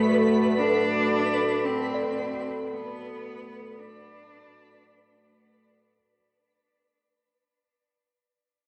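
In free time, this weightless ambient fragment, cut from a longer piece, rests on a Bm7 chord and fades out across its full 6 seconds. A dark, smooth analog pad with a sub octave and chorus holds sustained chords up front, while a bowed cello with clear vibrato sings the melody until 5.4 s, trailed by tape echo. A very quiet, clean tine electric piano plays arpeggios, and a bright, twinkling granular texture adds octave-up shimmer, all set in a wet spring reverb on a warm home cassette recording.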